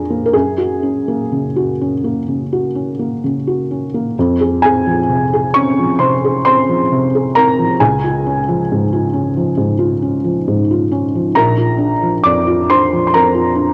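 Wistful and intimate, this short excerpt of neoclassical minimalist piano drifts in 4/4 at 61-68 BPM with a loose, rubato feel in F phrygian. A felt-muted upright piano plays alone from 0.0 to 13.7 s, its dark, mellow tone and short sustain sitting up front, spanning Bb1 to D6 as the harmony moves from Gbadd9 through Fm, Db and Bb. Light studio reverb and the character of a home cassette recording frame the performance, with a new section arriving at 4.2 s.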